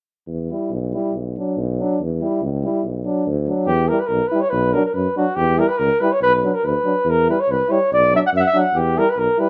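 A mellow, punchy flugelhorn carries the melody in this fiery, restless Balkan brass band passage cut from a longer piece, entering at 3.7 seconds with plate reverb and sitting up front despite its distant, roomy tone. Beneath it, a tuba with light vibrato holds down the bass from 0.3 seconds, while a clear trombone and a warm French horn fill out the accompaniment in a classical style, all over a steady back-and-forth between Em and Bm in 2/4. The rough home demo mix places the group in a moderate studio room.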